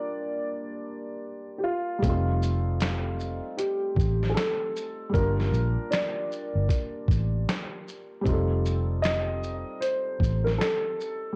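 A dry, hazy home cassette recording carries this nostalgic lo-fi hip hop excerpt at 77 BPM in 4/4 with a swung 16th-note feel, moving between Gm7 and F9. A dark, woody upright piano sits up front with the melody from the start, its tone smoothed by tape and a low-pass filter, while a soft, felt-muted upright piano plays intimate accompaniment beneath it. At 2.0 seconds a gritty, compressed, pitched-down boom bap kit enters with a thumpy kick, medium-tuned snare, hi-hat, shaker and finger snaps, alongside a round, punchy foam-muted electric bass that plays until 10.6 seconds.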